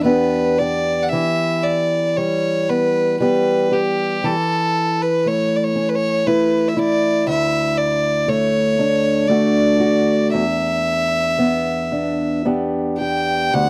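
A dry, close 1970s-style studio sound frames this haunting, mournful Celtic slow air in E dorian, moving freely in 3/4 at around 54-60 BPM, where a clear, focused bowed fiddle with light vibrato carries the melody up front while a fingerpicked acoustic archtop guitar, warm with audible finger squeak, accompanies through Em7, A/E and D, the short passage taken from a longer piece.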